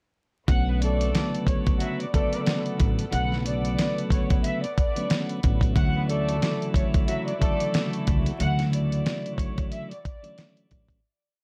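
A laid-back, swung boom-bap beat drives this dark, gritty hip-hop piece, led by a compressed, sampler-style drum kit up front with a thumpy kick, a fat snare and sixteenth-note hats. Beneath it, a pizzicato upright bass with a woody gut-string tone plays a deep looped line. A tonewheel organ with key click and a stopped rotary speaker repeats chopped chords with a cassette-tape tint, while a reedy violin section loops a short bowed melody through a digital delay, both filtered like a lifted sample. A horn section punches short riffs from 0.7 to 7.9 seconds, also touched by delay, and a rich, pure string pad floats softly in the background. Light reverb and vinyl crackle lend a dusty haze as the piece fades out from 8.4 seconds.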